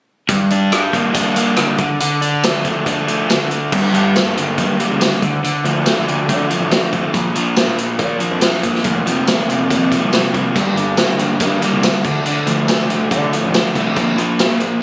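Indie rock with a restless, moody edge, this straight 4/4 excerpt opens on a crunchy overdriven guitar riff played up front over an acoustic vintage drum kit with a punchy kick, medium-tuned snare, dark cymbals, rim clicks and tambourine. A growly fuzz bass, bright and direct, joins at 3.7 seconds, and a sludgy distorted guitar treated with lush chorus and tape echo slips into the background at 10.6 seconds as the chords move through minor shapes and suspended voicings. The sound is compressed and set in a moderate studio reverb, with the feel of a phone capturing the band in the room.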